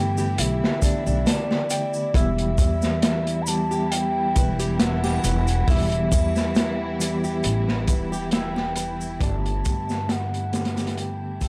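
A smoky, melancholic trip hop excerpt in E minor at 68 BPM opens with a breathy sine lead drenched in chorus, phaser and tape echo, a mellow tine electric piano with tremolo, lush bowed strings carrying 12-bit sampler grit, and woody pizzicato upright bass over Gadd9 moving to Em; fingerpicked nylon-string guitar arpeggios with analog delay and a distant tube shaker and triangle join at 0.2 s, and a dark, crunchy, up-front breakbeat kit of tight kick, medium-tuned snare and hi-hat lands at 0.4 s, all within a dry, transformer-saturated hardware sound that fades out from 6.9 s.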